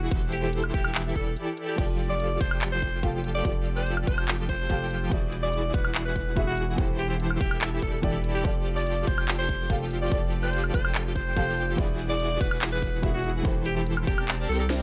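A dry, close recording with its highest treble rolled away opens this short passage of euphoric, lush future bass in F major, moving at 144 BPM in 4/4 with a half-time feel. A fat, detuned sawtooth polysynth carries the riff under a rich chorus, and it pumps against the sidechain alongside a deep, saturated sine sub bass that sits up front. An overdriven, punchy electronic kick and a trap kit with a sharp snare, metallic hi-hats, handclaps, woodblock and crash cymbal drive the groove in a small room. From 0.3 seconds a raspy, gritty alto saxophone takes the solo melody with vibrato and digital delay, sounding distant and roomy. A soft, felt-muted upright piano joins at 1.8 seconds in the background, its vintage, mellow tone trailing tape echo over chords cycling through Am7/E, F6 and E7. The kick drops out at 14.3 seconds, just before the cut.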